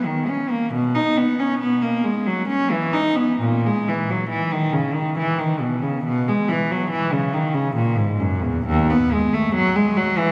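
Wet cathedral reverb with a 4.9-second decay fills this 10.3-second excerpt of a serene, dance-like, baroque-style suite movement in B major at a rubato 69 BPM in 3/4, where a single bowed cello plays alone up front against the distant room, its rich, reedy gut-string tone carrying light vibrato in period style.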